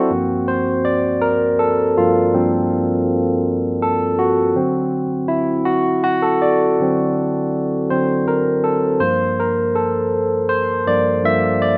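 In a rough home-demo mix topped out at 10.4 kHz, with light reverb and digital ambience, a bright, barky, clean tine electric piano sits up front through a combo amp with subtle chorus, playing solo from G2 to E5 across this sultry, yearning R&B excerpt in G dorian at 54 BPM in a straight 6/8 (tuned to A4 = 441 Hz), moving from Gm7 to D7 at 4.5 seconds and settling on Gm11 at 9.0 seconds.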